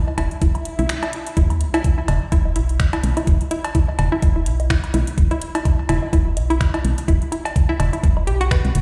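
Analog-toned woodblock and cowbell with delay open this sparse, cool minimal techno excerpt at 126 BPM with a swung sixteenth feel. From 0.2 s a hollow, bouncy square-wave pluck riff with chorus and tape echo joins a dark, woody FM bass with tube saturation, both pumping with sidechain compression, over a knocking, up-front electronic kick. Alongside, a garage kit adds finger snaps and metallic hats, while a swell and break lead into a drop at 1.4 s, marked by an impact and sub drop, all heard through a big system in a bare stone room.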